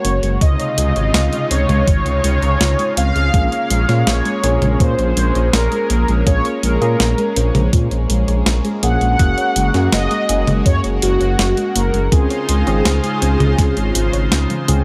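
Lightly reverberant and moody, this nostalgic synthwave excerpt sets a mellow, brassy synth lead with chorus and delay over a silky string pad with 12-bit sampler grit and sidechain pumping, a soft round pluck arpeggio with tape echo in the background, an up-front rumbling detuned saw bass, a clean 12-bit drum machine of hi-hat, medium-tuned snare and toms that ends in a short fill, a thumpy electronic kick from 0.4 seconds, and a tine electric piano with tremolo and tape echo that adds stabs from 3.3 seconds.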